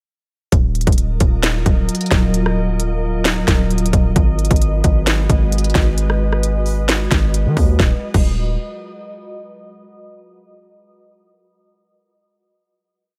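Trap hip hop in Eb minor at 132 BPM with a half-time feel, this short, complete piece sounds dark and hard-hitting, its tuning set slightly low at A4 = 435 Hz. The trap drum kit and the heavy 808-style bass both start at 0.5 seconds, the kit sitting up front with a hard-clipped kick, a sharp snare layered with finger snaps, crisp hats with fast rolls, rim clicks and a crash, all carrying a tape-warm, produced edge. The punchy sine-based bass adds a noise layer and a fast attack, holding long decaying sub notes that follow the kick and slide in pitch. At 1.1 seconds a glassy, ethereal FM pad fades in with slow-attack sustained chords, thickened by ensemble chorus and its own reverb, moving from Ebmadd9 to Abm7. The hook runs until 7.8 seconds, where the closing section brings the piece to an end inside a digital ambience.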